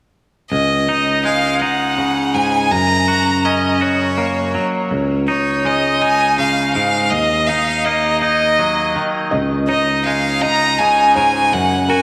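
A soaring, euphoric rock excerpt in Db major moves in a slow, straight 6/8 at 54 BPM, drawn from a longer piece. From 0.5 seconds a bright, intense solo violin carries the melody up front, its airy bowing and vibrato ringing high, while a clean, twangy electric guitar picks compressed arpeggios that range from deep bass notes into the middle register. Both parts carry slapback echo and digital delay, and the chords move through Dbsus2, Gb and Ebm, with Dbsus2 returning between them. At 9.3 seconds a felt-muted upright piano joins in the background with soft, mellow arpeggios, its intimate tone marked by audible action noise and treated with the same echo and delay. A lush hall reverb with a 2.4-second decay gives the whole mix a big arena sound.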